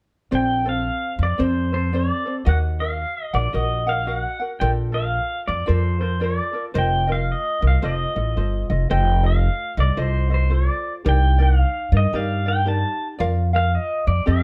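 Dreamy and sunny, this Hawaiian piece in B-flat major moves at 112 BPM with a lilting swing, drifting through lush chords such as Bbmaj9, Ebm and F7. Up front, a bright, twangy electric pedal steel guitar carries the melody with fingerpicks, slide and volume swells, bathed in plate reverb. A light, thumb-plucked acoustic ukulele plucks out the accompaniment, and a woody pizzicato upright bass sits prominently beneath, all set in a gentle room ambience.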